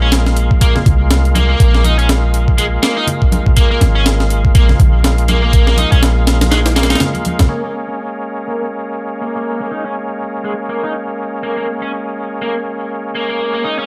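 Swaggering and raw, this breakbeat cut swings on a compressed, sampler-style drum kit with a thumpy kick and high-tuned snare, a deep, boomy 808-style bass up front, and ringing congas in the background from 0.8 seconds. Above them an overdriven tonewheel organ holds thick sustained chords with key click, chorus vibrato, vintage 12-bit sampler grit and sidechain pumping, while a biting overdriven guitar plays a picked riff through a low-pass filter and digital delay. At 7.5 seconds the drums, bass and congas drop out, leaving organ and guitar in a dry, close sound as a filter sweep works over the guitar.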